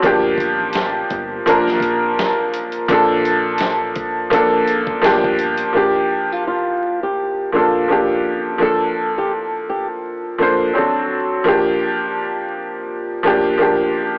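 The recording sounds hazy and homemade, as if a cassette were playing through an AM radio, with vinyl crackle and a moderate spring reverb around it. This reflective lo-fi hip hop fragment, cut from a longer piece, has a gentle swing over minor-seventh and major-seventh chords that turn to a dominant seventh near the close. A worn, woody upright piano sits up front throughout, bright and slightly detuned, its tone softened by a low-pass filter. Through the opening seconds, a gritty, compressed sampler-style kit with a thumpy kick, medium-tuned snare and hi-hat, coloured by cassette tape, plays alongside a deep, round fingered electric bass tucked in the background. Once they drop out, a thumb-plucked flamenco guitar carries the melody from 5.8 to 10.7 seconds, its acoustic tone filtered and tape-tinged, before the piano continues alone.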